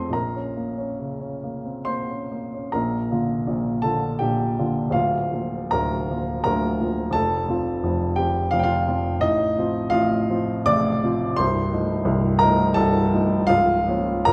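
A warm, woody upright piano sits up front in this brooding, stormy romantic character piece, an excerpt in 3/4 with rubato at 66-88 BPM in Bb major, opening on a Bbm chord before brightening to Bb at 2.7 seconds and moving through F and F7/C to close on Bbm/Db at 13.5 seconds, spanning C1 to Eb6 within a moderate concert hall reverb.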